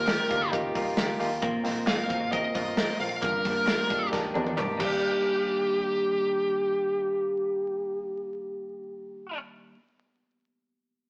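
Jangly indie pop with a breezy, nostalgic mood, cut from a longer piece: an up-front overdriven lead guitar carries the melody over a reedy electric piano with fast tremolo, twangy twelve-string arpeggios, a round, foam-muted dub bass in the background, punchy studio drums with a fill and very quiet crisp handclaps that both drop out around 5 seconds, all set in a stone-room reverb with a rough rehearsal-room, small-speaker sound and vinyl crackle.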